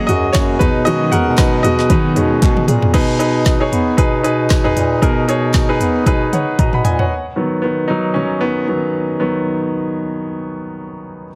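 Anthemic and hopeful, this short piano-driven pop excerpt moves at 115 BPM in 4/4 with a light sixteenth-note swing, set in B major. A bright concert grand piano carries the accompaniment throughout, its polished, up-front tone pairing brilliant highs with a deep low end and short sustain, and it takes solo turns in the opening and again from 7.1 seconds onward. A warm, full-bodied fingerpicked steel-string acoustic guitar adds a riff that stops at 3.0 seconds, while a clear bass clarinet with a soft attack supplies the bass line in a classical style. A deep house drum kit sits up front with a deep kick, woody snare and smooth hats, plus crash, toms and handclaps, playing fills at the close of the first two sections before the piano finishes alone. A crisp group handclap sits very quietly underneath in the early seconds. Light reverb and small room ambience frame a heavily compressed, radio-style sound, with chords moving from F#add9 to B6 and settling on B.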